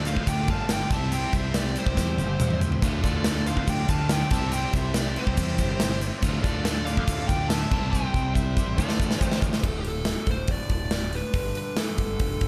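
A straight 4/4 groove at 141 BPM drives this swaggering, gritty classic rock excerpt in D minor, anchored by a big, up-front acoustic drum kit with a punchy kick, medium-tuned snare, crash, hi-hat, toms and bright cymbals, and a fill that runs from 7.9 seconds into the change. Underneath, a growling fingered bass with overdrive moves between Dm and C, while a crunchy overdriven guitar and a warm, hollow-bodied semi-hollow guitar with spring reverb play the riff in the background. A dark, fuzz-distorted lead guitar carries the melody, shadowed by a quieter octave-fuzz lead line with slapback echo. A full, shouting tonewheel organ with slow rotary and key click sustains chords at a barely audible level, and a grainy, distant egg shaker sits far back in a large room. At 9.6 seconds the organ and semi-hollow guitar drop out, the octave-fuzz line and shaker having just fallen away, as the harmony shifts to D5 and then G5 under the fuzz lead, crunchy riff, bass and drums.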